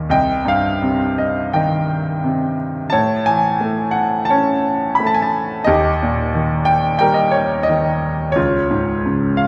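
Hopeful and warm, this brief excerpt of lyrical classical solo piano unfolds at about 87 BPM in 4/4 with a flexible rubato feel, its bright, brilliant baby grand sitting up front and natural across a broad span from C2 to Cb6, moving through Cm, A, Eb and Db within a lush, reverberant hall-like space.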